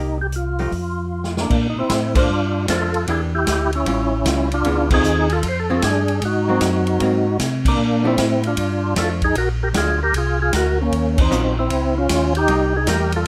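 Soulful and greasy, this short soul jazz organ trio cut swings at 153 BPM in 4/4, with a fat, lightly overdriven, percussive tonewheel organ carrying the melody through slow rotary speaker and chorus vibrato, a mellow, round organ bass also turning on a slow rotary, a dark, picked, compressed hollow-body archtop guitar comping, and an acoustic big-band drum kit with punchy kick that enters at 0.3 seconds and drops a fill at 1.1 seconds before the band hits accents over chords like Bbmaj9, A7b13 and Ebm9 in a light reverb.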